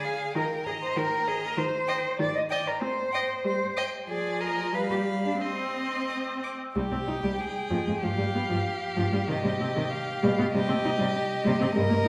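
Quick classical-period string quartet movement in C minor, graceful yet cheerful, moving in a flexible, rubato 2/4 at roughly 88-99 BPM and cut from a longer piece, with a new section arriving at 6.8 seconds. The first violin sings the high melody with vibrato, expressive portamento and a distant quality, while the second violin plays a focused inner line. A soft-attacked, sliding viola and a smooth, even cello sit up front, and all four rich, bowed voices ring in the reverberant space of a recital hall.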